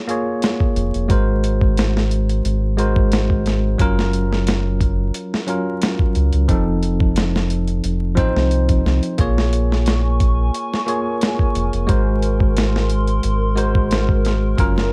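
Trip hop at 89 BPM with a hypnotic, brooding mood, built on a bell-like tine electric piano colored by harmonic tremolo and a low-pass filter, a gritty, overdriven sampler-style drum kit with a thumpy kick, and a deep, round analog bass arriving at 0.8 s, all cycling through Bbm7, Ab9, Gbmaj7 and F7, before a warbling, nostalgic tape-like pad with chorus and 12-bit grit drifts in at 9.7 s over a dark production laced with vinyl crackle.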